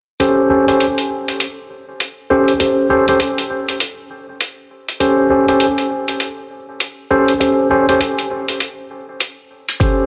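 A clean tine electric piano sits up front, playing stabs on an A7#9 chord through sidechain pumping, a low-pass filter and analog delay, with a boxy quality as if heard through built-in speakers. This playful, gritty glitch hop fragment, cut from a longer piece, moves in 4/4 with a swung sixteenth-note feel. A sampler-style electronic hi-hat runs alongside the piano from 0.2 seconds, compressed, pitched down and tape-warm, with a grainy edge. Only at 9.8 seconds does an electronic kick drum arrive, a thumpy, overdriven hit that is also pitched down and pressed forward in the mix. The whole track is bathed in a long plate reverb, giving it a dreamy, soaked atmosphere.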